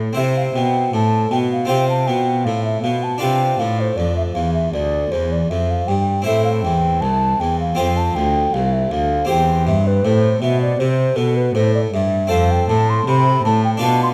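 A serene, flowing baroque-style sonata movement in C major at 79 BPM with a gently rubato feel, in which an airy, wooden flute with vibrato and tongued notes carries the melody from 0.2 seconds over a bowed gut-string cello bass, reedy and up front, and a brilliant, plucked French-style harpsichord continuo with octave strings, all captured by close, detailed microphones in a moderate recital hall reverb.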